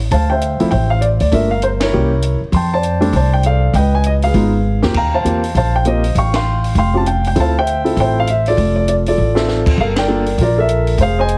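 A woody, thumpy pizzicato upright bass on gut strings opens this moody, smoky jazz piano trio excerpt in D minor, swinging at 199 BPM in 4/4, with an intimate, up-front grand piano carrying the melody over chords such as Dm9, C7b9 and A7alt, its action noise audible. A compact cocktail kit sits lower in the mix, with dark cymbals, a high-tuned snare, a tight kick and brief fills. The band hits accents together at 1.8, 6.3 and 9.9 seconds under light reverb, all squeezed into a heavily compressed radio sound.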